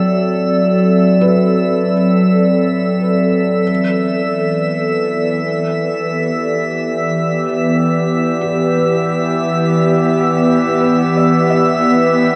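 A warbly, detuned tape-like pad holds mellow sustained chords up front in this melancholic, spacious ambient excerpt at 50 BPM in 3/4 and E minor, moving from D7 to Em7, while a felt-muted upright piano with audible action noise plays soft arpeggios in the background through a diffuse delay and fades out, a calm glass-harmonics texture with drifting overtones fades in above, and a bright, string-like bowed drone with vibrato enters at 4.3 s, under a huge, wet reverb.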